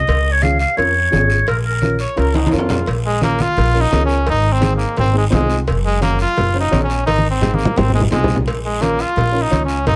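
A clear, roomy clarinet opens this driving, danceable cumbia excerpt in Bb minor at 172 BPM, carrying the melody up front for its first 2.0 seconds. Beneath it, a woody, thumpy pizzicato upright bass with steel strings anchors the groove. Low-tuned congas with thick skins and soft hands, ringing metal-shell cowbell and timbales set in the background, and a raspy, close guiro fill out the percussion. A dark, mellow upright piano with audible action noise and short sustain supplies the harmony, moving through Db, Bbm, Ab and Gb. At 2.0 seconds a warm trumpet with light vibrato enters as a second line, and after a drum fill it plays a pop-style solo from 2.9 seconds to the end, with another drum fill later on. Light reverb gives the sound a modest sense of space.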